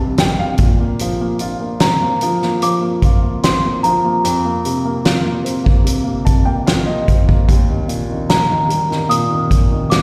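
A straight 4/4 pulse at 74 BPM carries this hopeful, emotional pop ballad fragment, with a natural country drum kit entering at 0.2 s and placing a fat snare, punchy kick and hi-hat up front. A woody, polished upright piano with short sustain plays the accompaniment over Cm, Bbsus2, Fsus4 and Eb, adding fills at 0.0 s and 5.9 s. Above it a delicate, bell-like celesta sings a sweet melody treated with plate reverb, slapback echo and digital delay, all heard as a live gig through the venue's PA with moderate club and recital hall reverb.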